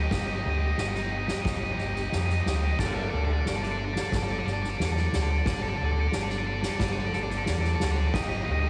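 A crunchy, bright overdriven guitar opens the recording alongside an amped, foam-muted electric bass, both sitting up front in this hopeful, soaring post-rock excerpt cut from a longer piece. The picked guitar is double-tracked and plays a riff in its upper register, while the fingered bass, overdriven yet warm, holds down the low end. At 0.1 seconds an acoustic drum kit joins, struck with soft mallets on both drums and cymbals, giving a boomy kick, a medium-tuned snare, dark cymbals and crashes with a natural, hall-like character. The harmony moves from Eb/G to Gsus2 at 2.8 seconds and returns to Eb/G at 8.1 seconds, all within a single build-up in a straight 4/4 feel. A small room ambience surrounds the whole passage, keeping the full, driven sound close and immediate.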